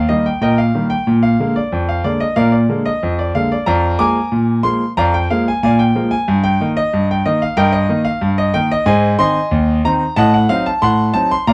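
A solo concert grand piano opens this lively, playful ragtime passage in Eb major, moving at 92 BPM in a straight 2/4 and tuned slightly low to A4 = 437 Hz. The piano sits up front with a smooth, vintage tone and deep bass, spanning Eb2 to D6 as the harmony travels from Eb through Bb7/F and Eb/G to Ab, closing on an Adim7 at 10.2 seconds. A moderate studio reverb and a dark, warm production frame this brief cut from a longer piece.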